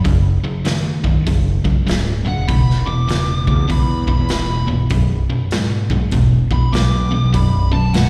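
A swung 4/4 groove drives this raunchy, swaggering blues rock and southern rock excerpt, with a gritty, punchy garage drum kit pumping in a small room beside a growling, overdriven fingered bass and a bright, double-tracked cranked stack guitar riff with slapback echo, all up front through a chord cycle of F#5, E5 and B5. At 2.3 s a quieter fuzz lead guitar enters high above with distortion, slapback echo and analog delay. The sound is that of a live gig heard through the venue's PA, with recital hall reverb and small room ambience.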